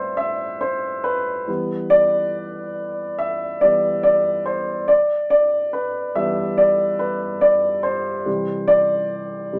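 In a straight 4/4 feel, this brief pop piece from a longer work is carried by a dark upright piano playing alone, its woody, mellow tone sitting up front with a long sustain and a melancholic, heartbroken mood. The chords move from Am7 to Em at 1.5 seconds, then through G6 to Cadd9 at 8.3 seconds, set in a moderate club-style reverb.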